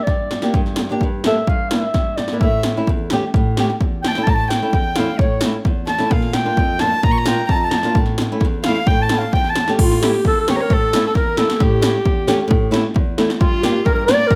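A straight 4/4 pulse that keeps speeding up is driven by overdriven 80s electronic pad drums, with a punchy kick, gated snare and crash cymbal, and a short fill from 1.9 to 2.4 seconds. This festive yet bittersweet klezmer excerpt features a dark, breathy clarinet with vibrato and scooped notes that takes the lead and solos until 9.8 seconds, over a fingerpicked flamenco guitar whose finger squeaks sit up front. From 2.4 seconds, a quieter single violin adds a floating, sul tasto second line with an airy bow, all in a close, detailed sound with light reverb.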